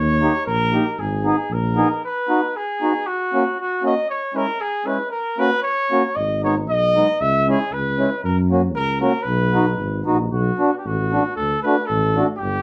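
A live band fills a reverberant studio room, giving this short section of a longer piece a close, natural ambience. It is festive, bouncy alpine folk in B major, played in 2/4 at 116 BPM with a loose, rubato feel and tuned slightly below standard pitch. A mellow trumpet carries the melody throughout, sounding distant and roomy, with a light vibrato and a classical polish. Beneath it in register, a reedy, round accordion supplies the accompaniment up front, moving through chords such as G#m, C#m and F#. A smooth-topped tuba plays the bass line in a classical style, dropping out at 1.8 seconds and returning at 6.2 seconds to carry the low end to the close. Near the end the harmony takes a surprising turn from B to B minor and then D.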